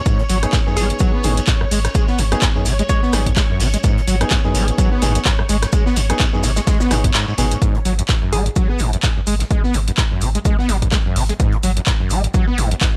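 An excerpt of gritty, hypnotic acid house at 127 BPM in G# minor opens on a lush string machine chord with sidechain pumping, over a squelchy, distorted acid bass riff with tape echo up front, a punchy electronic kick, a tape-warm analog drum machine of handclaps, hi-hat and rim click, a very quiet acoustic kit with shaker and snare, a distant grainy shekere, a round sine sub bass, dark piano stabs with audible action noise, and a hollow, nasal square pluck melody that fades out by 3.3 seconds. The kick drops out at 7.1 seconds, the piano stops at 7.5 seconds, and the strings and shekere stop at 7.6 seconds. The bass and drums then play on with little reverb, joined by a brief return of the pluck around 8.3 seconds.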